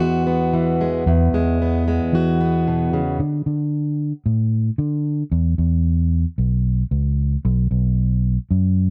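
A round, amped fingered electric bass sits up front through this short indie folk excerpt, carrying its dark low line for the full 8.9 seconds. Alongside it, a fingerpicked plugged-in steel-string acoustic guitar with fresh strings and an auditorium-sized body rings clearly forward, then stops at 3.2 seconds, leaving the bass alone. The tempo is a straight 113 BPM in 4/4, and the harmony opens on Eadd9 before moving through D5, E5 and B5. Light reverb and a dark, warm production give the passage a hopeful glow, suggesting the start of an arrangement meant to build.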